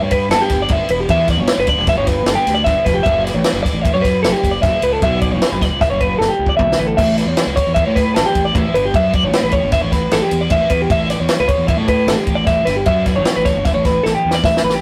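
A rough, saturated rehearsal-room sound in a small, moderately reverberant space frames this playful math rock and midwest emo fragment at 153 BPM in 5/4, where a bright, twangy, compressed twelve-string electric guitar picks clean arpeggios up front over G6, Dmaj7/F# and A7, a dark, round fuzz bass with overdrive holds the low end, and a dry compact cocktail drum kit with dark cymbals, a high-tuned snare and a tight kick sits close, with fills at 6.2 and 14.0 seconds.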